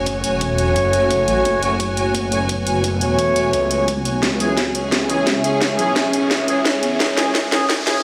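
A straight 4/4 beat anchors this dark, mechanical stretch of technical drum and bass, cut from a longer piece. Up-front drums with a cracking snare and bright hi-hats sit over a very quiet knocking electronic kick, with a drum fill arriving at 4.2 seconds. A swirling, saturated detuned saw bass, a deep, moody pad with chorus and sidechain pumping, a smooth bowed chamber string section and mellow brass stabs under a filter sweep and digital delay build over F# minor moving to C# minor, as a faint riser enters at 6.1 seconds, all inside a bare stone room.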